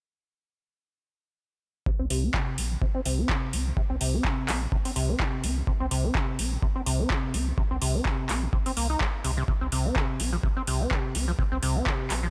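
A squelchy, resonant sawtooth acid bass riff with tube saturation, subtle chorus, delay and a filter sweep sits up front in this hypnotic, trippy acid house excerpt from 1.9 seconds, over a deep overdriven electronic kick, a round sine sub bass with sidechain pumping, and a booming, up-front analog drum machine of handclaps and metallic hi-hats, all with a swung 16th-note feel and a dry sound, the drums re-recorded in a small room.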